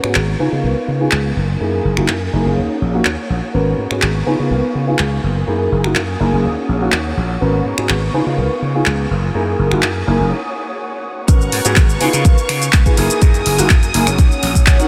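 Filtered disco house at 124 BPM with a sensual, groovy feel, built on a looping C#7, F#13, D#m7 and G#m11 progression. A mellow grand piano with short sustain and phaser carries the accompaniment, while distant, woody strings hold lush bowed chords with vibrato, and a growly, overdriven slap bass sits up front, all three pumping under a low-pass filter. Overdriven analog drum-machine snaps, claps, hi-hat and shaker run throughout; after a filter sweep and a brief break at 10.3 seconds, a punchy layered kick drops in at 11.3 seconds, the whole dreamy mix soaked in huge ambient reverb.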